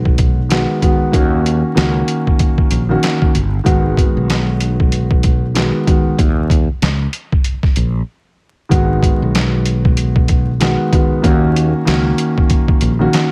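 Boom-bap hip-hop in G# minor at 95 BPM with a 60% swing on the sixteenths, this gritty, moody excerpt pairs a dark, mellow, intimate grand piano with audible action noise with a growly, bright fretless electric bass and a pitched-down, overdriven sampler-style drum kit of thumpy kick, medium-tuned snare, hi-hat and handclaps, all over a bed of vinyl crackle, with a break from 6.2 to 8.7 seconds before the second section returns to G#m7.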